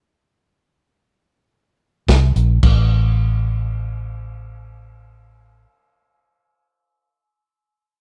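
A dry, close 1970s-style studio sound frames this brooding, smoky fragment of straight-eighth soul blues in free time: after silence, a gritty, saturated breakbeat kit with dark cymbals, a tight kick, snare and hi-hat comes in at 2.1 seconds and stops at 2.8, while a round, punchy, foam-muted fingered electric bass enters alongside it in a low register and carries on until 5.6 seconds.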